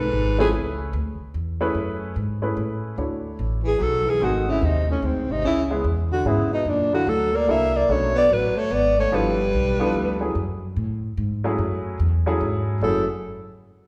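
A breathy, whispered alto saxophone carries the melody up front in this late-night, swinging jazz excerpt in F# minor. Its close-miked, intimate tone is shaped by vibrato, soft attacks and scooped notes. A mellow baritone saxophone adds a second line in a lower register with the same vibrato and hush, and after a brief opening phrase the two horns play together from 3.7 to 10.4 seconds. At 146 BPM in a swung 3/4, they ride over a woody pizzicato upright bass with steel strings that sits up front and plays throughout, and a slightly detuned upright piano with a warm, short-sustained touch that enters at 0.4 seconds. The harmony moves through extended chords such as F#m11, G#7b9, F#7alt and G13 before settling on F#m9. A recital hall reverb gives the performance the roomy resonance of a church or concert hall.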